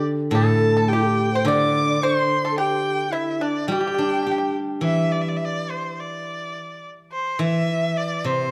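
All four instruments sound together from the opening moment: a bowed erhu carries the melody, an end-blown bamboo xiao and a pipa share a second line, and a steel-string zither accompanies from below. This graceful, pastoral piece of Chinese traditional chamber music moves in a flexible, rubato two-beat metre. The erhu, played by a single player, sits up front yet sounds slightly distant, its clear, smooth and even tone shaded with vibrato and portamento, while the xiao offers a pure, reedy straight tone with tongued notes. The pipa, picked with fingerpicks, is dry and percussive, and the zither's silvery, ringing strings, also fingerpicked and up front, give the accompaniment a bright sheen. The pipa drops out at 4.5 seconds and the xiao at 4.6, so the second section from 4.8 seconds leaves the erhu and zither together in a wet recital hall with a dark, warm production, in a passage cut from a longer piece.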